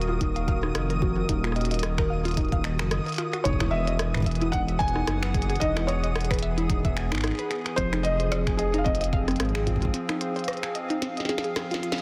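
A hollow, flute-like pad and a warbling, lo-fi pluck tracing arpeggios open this glitchy, intricate IDM excerpt at 111 BPM with a light 16th-note swing. They ride over a clicky, tiny-snared electronic kit with finger snaps and rim clicks, a flickering, grainy texture in the background, and a rumbling, detuned saw bass with tube saturation sitting up front beside a deep kick. From 3.4 seconds a felt-muted upright piano carries the melody, soft and intimate with audible action noise and delay, as the chords move from Ebmadd9 through Emaj7 to Fm7; at 9.9 seconds the bass and kick drop out for a break, a drum fill closes the final second, and the whole sits in light reverb within a dense, heavily limited master.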